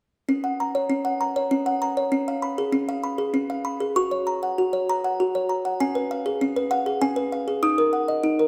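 A delicate, tinkling music box carries this dreamy, tender classical lullaby on its own, its plucked tones coming from a large box that sounds slightly out of tune and sits up front in the mix. It plays from 0.3 to 8.5 seconds, ranging from C#4 up to D#6 in a gentle three-beat lilt with a straight feel. The harmony moves from an F# chord over C# to C#7, settles back on F# as a new section begins at 4.0 seconds, then returns to C#7 and comes to rest on D# minor. A moderate reverb, like that of a scoring stage, lends the notes a soft halo that lingers after each pluck. The passage is cut from a longer piece, so it feels like a brief glimpse into a bedtime melody.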